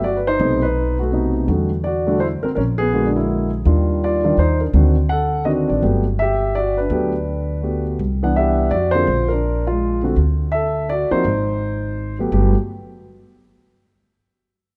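A swung 3/4 lilt at 166 BPM drives this playful, sophisticated jazz fragment cut from a longer piece, where a dark, mellow baby grand piano with long sustain carries the melody up front over a woody, growly pizzicato upright bass on steel strings, both playing from 0.0 to 12.5 seconds through rich chords such as B7b9, Ebmaj9 and Cmaj9#11 before reaching a chordless close at 12.3 seconds, all captured by close, detailed microphones in light reverb.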